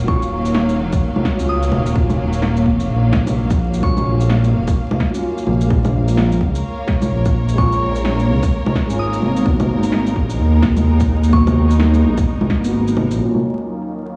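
A muffled felt-muted upright piano with tape echo, lush bowed studio strings and a deep, rumbling detuned saw bass open this rainy, ghostly future garage excerpt at 128 BPM in Eb minor, each pumping under sidechain over Ebm7, Bbm7 and Abm7 chords, while a tight kick and a cracking, filtered snare with shaker and bongos drive a swung 16th groove, a soft, warbling FM bell with chorus, phaser and tape echo sings brief melodies starting at 0.1 and 7.6 seconds, and vinyl crackle and stone room reverb make it sound as if played on a big sound system in a bare room.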